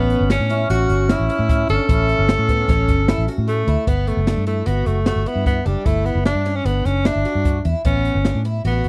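Intricate and driving, this short cut from a longer progressive instrumental moves in a straight 5/4 with a dry, close 1970s-style studio sound. A warm tenor saxophone carries the melody up front, jazz-styled with a smooth top and light vibrato, while an airy, bright alto flute adds a crisp-attacked, unsteady second line with vibrato until 3.6 s. Underneath, a picked twelve-string acoustic guitar spins shimmering, octave-doubled arpeggios, its finger squeak audible. A dark, round, foam-muted electric bass sits prominently in the mix, and an open acoustic jazz kit enters at 0.1 s with a high-tuned snare, boomy kick and hi-hat in a studio room. The harmony moves from A13 to Gmaj9 at 3.9 s before returning to A13 near the end.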